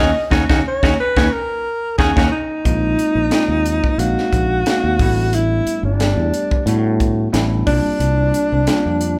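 A lightly swung sixteenth-note groove in 4/4 drives this short electric jazz fusion excerpt, nocturnal and slick in mood. The crisp drum kit enters at 0.3 seconds with a punchy kick, a high-tuned snare and hi-hat, its small, pumping room sound up front, and a drum fill arrives just before the opening band accent ends at 2.7 seconds. A mellow alto saxophone carries the melody with jazz-style vibrato, soloing at the front of the mix, while a growly, amped fretless bass sits equally forward. A bell-like tine electric piano, bright and clean through its built-in speakers, supplies accompaniment, and a twangy, compressed electric guitar adds picked stabs only until 2.3 seconds. The harmony opens on Ebm7 before moving through Bb9sus4, A9sus4 and C9sus4, with light reverb giving the sense of a band playing live together in one room.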